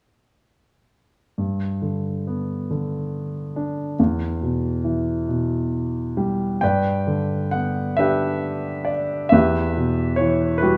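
A concert grand piano enters at 1.4 s. Its tone is warm, with a deep bass, and it sits up front in the sound. This short passage from a longer classical piece for lyrical solo piano has a reflective, wistful mood. It moves in a slow 6/8 at 45 BPM, counted in dotted quarters, and rubato gives the time a flexible, breathing feel. The harmony moves from G to E minor, then returns to G at 6.6 s to open a second section that runs until 10.8 s, and the piano spans E2 to G5 under light reverb.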